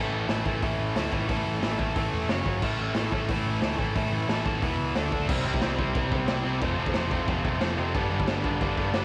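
A straight 4/4 beat anchors this energetic, rowdy punk rock excerpt, with a raw garage drum kit joining at 0.3 seconds on kick, snare, hi-hat and crash. The kit sounds gritty and saturated in a small, pumping room, with dark cymbals, a punchy kick, a medium-tuned snare and a rolled-off top, all sitting up front. Two overdriven electric guitars play picked riffs throughout, one distorted and bright, the other compressed, both carrying a cassette tape coloring. Underneath, a picked electric bass growls with amped overdrive. The chords move from A through F#5 and E5 to D5, then shift at 5.3 seconds into a new section built on C, F and G. The home cassette recording sounds dry, with little reverb.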